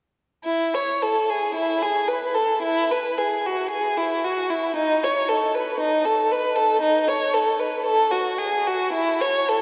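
Dance-like and radiant, this short fragment from a longer piece is a baroque-style suite movement for unaccompanied violin in E major. It moves at a slow 57 BPM in 4/4, with a freely breathing rubato feel. A single bowed violin plays alone from 0.4 to 9.6 seconds, ranging from D#4 to C#5 with a soft attack, expressive vibrato and gliding portamento. Miked close and placed up front, its warm tone sits inside a church or concert hall. A lush cathedral reverb lingers for about 5.5 seconds, giving each phrase a long, glowing tail.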